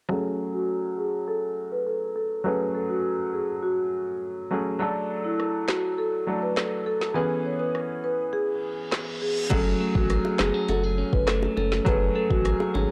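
Dancehall with a bouncy, tough mood, cut from a longer piece and built on a straight 4/4 pulse in a minor key. A close-miked, dry marimba carries the melody from the start, alongside a bright, worn grand piano held up front in accompaniment, both passing through a low-pass filter that sweeps until 9.5 seconds. An electronic afro-pop drum kit arrives at 5.4 seconds with a deep kick, woody snare, metallic hats, handclaps, rim clicks and crash cymbal, overdriven and roughened with vintage 12-bit sampler grit, and its kick drops out briefly before an electronic reverse cymbal leads into the next section. At 9.5 seconds the arrangement fills out: a clean, picked electric guitar plays compressed arpeggios, a round sine sub bass with transformer saturation sits underneath, and tight, high-tuned bongos tap softly in the background. The chords move from F#madd9 through D and C#m7/E before returning to F#madd9, and the whole track has a gritty hardware sound with light reverb.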